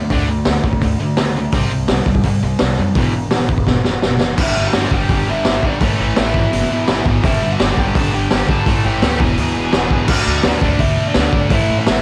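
A straight, driving punk rock beat from a raw garage drum kit, up front with a boomy kick and gritty, saturated tone, powers this rebellious, energetic cut from a longer home-made cassette recording, where a bright, scooped distorted electric guitar and a dark, sludgy guitar grind out picked riffs alongside a woody pizzicato upright bass before a drum fill at 3.7 seconds ushers in a bluesy overdriven lead guitar melody at 4.4 seconds, all in a dry room.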